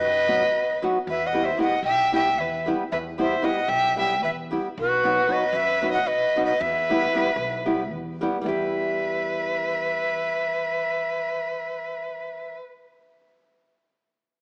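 A breathy, bright, crisp-attacked ney carries the melody up front from the start, alongside a warm, expressive violin second line with vibrato and portamento and a faint, woody, dark pizzicato upright bass, while a small, fingerpicked nylon-string guitar enters at 0.3 seconds with audible finger squeak, forming a fiery, restless Balkan folk excerpt in 7/8 at 228 BPM counted in eighths that moves between B and Em in E harmonic minor, set in a moderate concert-hall reverb with a small-speaker sound.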